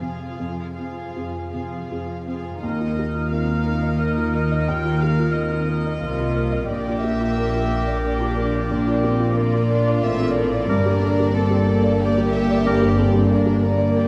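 Cinematic, emotional orchestral film score in a rubato 3/4 around 78-94 BPM, longing and sorrowful, where a felt-muted upright piano, woody viola section, sul tasto violin second line and rich cello bass open together before, at 2.6 seconds, a floating violin melody arrives with airy flute section, a clear background clarinet, dark soft-attack French horn chords and a double bass section, all moving through Fm, Ebsus2, Bb and Gm in moderate concert hall reverb with a dark, warm production, cut from a longer piece.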